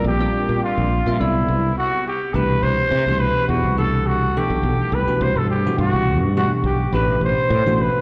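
A growling trumpet leads this slick, soaring jazz excerpt, its raspy, gritty tone carrying scooped notes and vibrato through a slapback echo, sitting up front yet sounding roomy. Beneath it, a bell-like tine electric piano supplies clean accompaniment with its own slapback echo, while a fretless electric bass holds down a sustaining, growly line that sounds direct and amped. A very quiet analog pad, smooth and detuned with chorus, holds soft-attack chords only until 1.8 s, when the music stops briefly before resuming at 2.3 s. The tune moves at 104 BPM in 4/4 with a swung sixteenth-note feel in C lydian, passing from Bb69 to Cmaj9, settling on Cmaj9#11 and turning to Am11 near the close. It comes across as a live gig heard through a venue's PA, with light recital-hall reverb.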